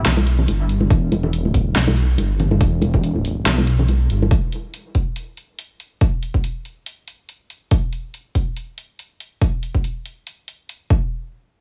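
A dark, detuned sawtooth bass dominates this cavernous deep dubstep excerpt: a deep, rumbling, saturated tone with a beating quality, a sine weight underneath, a fast attack and long sustain, sitting up front in the low register. The groove moves in a half-time feel in 4/4, with a light swing on the sixteenths. A punchy, layered electronic kick drum joins at 0.9 s and stays up front, while a produced deep house kit adds hi-hat and a fat snare. Close, dry acoustic congas with a thin, damped skin and soft hands add a bright touch, and their dub echo trails off into the digital ambience. The bass and congas both stop at 4.3 s, leaving the kick and kit to carry the dark mood through the remaining single section.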